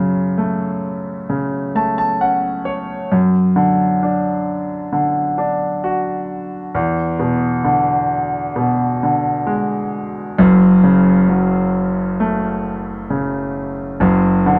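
Pop piece for solo concert grand piano at 66 BPM in F# minor, emotional and heartbroken, moving from F#m through D/F# and E7 before returning to F#m and D/F# in a second section from 10.4 seconds. The piano sounds clear and polished, with deep bass, short sustain and an up-front presence, spanning F#1 to A5 and adding a fill between 1.3 and 3.1 seconds. A moderate stone-room reverb gives it the feel of a live performance in one space, and the excerpt is cut from a longer piece.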